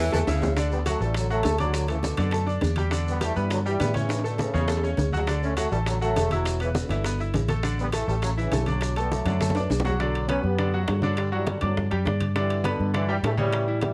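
Danceable and festive, this salsa clip at 204 BPM in D major opens with a brief edgy saxophone section figure alongside a mellow, roomy trombone section that carries the melody over brilliant grand piano accompaniment and a dark, foam-muted electric bass punching up front, while ringing low-tuned congas, round bongos, saturated metal-shell timbales and grainy, distant maracas (heard until 10.0 s) sit in the background beneath light reverb, with drum fills marking 4.1 s and 9.4 s before the passage shifts toward Bm at 10.0 s.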